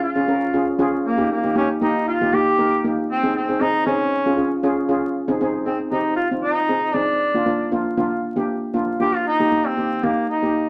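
A clear duduk opens this festive, bouncy calypso excerpt in Ab major at 117 BPM, carrying the folk-style melody with vibrato and scooped notes, sounding up front yet distant and roomy. A metallic, shimmering double-seconds steel pan joins at 0.2 seconds as mellow accompaniment, struck with soft rubber sticks in a boxy small room, under a light 16th-note swing. From 5.2 seconds the duduk takes a solo, and the whole is wrapped in wet studio reverb with a layer of vinyl crackle.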